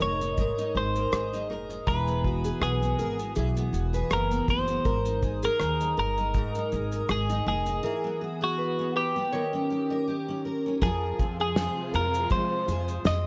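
A lightly swung 16th-note groove at 80 BPM in 4/4 carries this sunny, easy-going acoustic pop excerpt in Ab major. A cloth-damped, thuddy drum kit of kick, rim click, shaker and fat snare sits under a woody, growly pizzicato upright bass and a full-bodied, double-tracked steel-string acoustic guitar, while a clean, compressed twelve-string electric guitar takes the melody up front. A small fingerpicked nylon-string guitar plays arpeggios with slapback echo in the background, and a lush, distant bowed string section holds chords from 10.8 s, all set in light small-room reverb.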